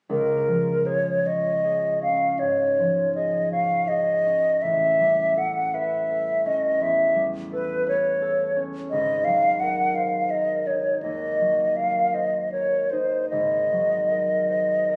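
Impressionist classical duo, pastoral and luminous, moving in a rubato 12/8 at 55 BPM with uneven beats, where a hollow, airy concert flute with vibrato and a crisp attack sits close-miked and up front carrying the melody while a thumb-plucked, ringing concert harp accompanies beneath it over chords shifting from Db to A9 at 4.6 seconds and Ab9 at 8.9 seconds, tuned to A4 = 439 Hz and captured on a phone in a recital hall with moderate reverb, added club reverb and compression, in this short passage cut from a longer piece.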